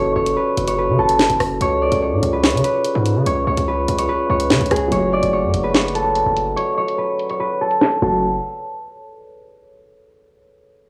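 A thumb-plucked concert harp carries the melody of this dark, tense drill track, its ringing acoustic tone softened by a low-pass filter and tape echo as it sits up front from the very start. Underneath, a distorted 808-style bass hits hard with a saturated, noise-layered growl and fast attack, while a drill drum kit with a sharp snare, bright hats, rim clicks and crash cymbal enters at 0.3 s, moving at 145 BPM in a half-time feel in F# harmonic minor. In the background, a glass harmonica holds ethereal, beating chords over F#m and C# until 4.9 s, when a felt-muted upright piano takes over the accompaniment with a mellow, intimate tone and audible action noise. That second passage brings a filter sweep, and the kick drops out from 6.6 s before the harmony falls away. The overall sound is dry and gritty with a light small-room ambience, and the clip is cut from a longer piece.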